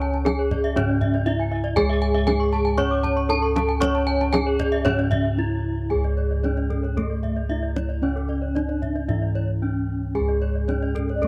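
Mellow bronze bossed gongs sit up front in this shimmering, brilliant Balinese gamelan passage, their round, padded tones anchoring the bass from low to high, dry and full. Above them, a horn-mallet bronze metallophone carries the melody in C# pelog with a ringing voice, its paired tuning producing shimmering beats inside a boxy small-room sound. A lower metallophone plays the accompaniment, while two brighter metallophones spin arpeggios in the upper register, one close-miked and dry, the other airy and beating against its paired partner. The kendang adds deep, hard-handed acoustic drumming, recorded close, over an uneven pulse at 115 BPM in 4/4. After a break at 5.1 seconds the music moves into a new section, and at 11.2 seconds a mellow bass bansuri slips in with a soft, bamboo-toned note carrying vibrato just as the cut from the longer piece ends, all under light reverb and a dark, warm production.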